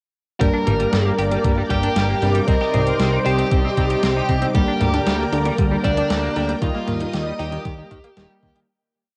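Nostalgic and nocturnal, this short synthwave piece rides a thumpy, overdriven electronic kick, an 80s-style detuned 8-bit drum machine backbeat, and a fat, saturated analog bass driving eighth notes beneath the chords. A distorted, bluesy lead guitar carries a repeating riff melody over bold, brassy synth stabs with tremolo, a silky, pumping string pad with phaser, and a twangy clean guitar sequence with chorus and delay in the background. A warbling, dusty pluck arpeggio joins very quietly at 4.5 s, and the home-cassette recording fades out from 5.9 s.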